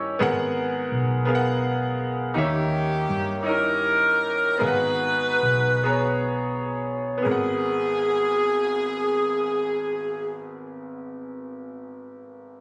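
A slow, straight 6/8 pulse at 40-56 BPM in dotted quarters carries this soulful, solemn gospel excerpt in G# minor, moving from G#m9 to D#7b9 and back: a brilliant, up-front concert grand piano with deep bass supplies the accompaniment, a round, punchy hollow-body electric bass sits beneath it, and a tight, close-miked saxophone section with light vibrato and a soft attack takes the melody from 2.4 s, while the tempo slows between 2.4 and 7.3 s in a small-room recording captured on a phone with light reverb and compression.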